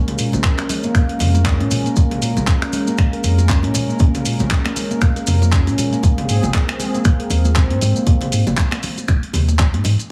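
Spiritual and hypnotic, this swung 118 BPM afro house cut in Bb minor, moving from Bbm7 to Ab, rests on a round sine sub bass and an up-front, deep, tape-warm electronic kick, with a layered deep house kit of finger snaps, handclaps, hi-hat and toms, bright high-tuned congas and grainy maracas tucked in the background, while a ringing, meditative handpan with digital delay and a smooth, detuned sawtooth pad with chorus both pump against the kick until they stop at 8.0 s, all framed in light reverb and a heavily compressed, radio-like sound.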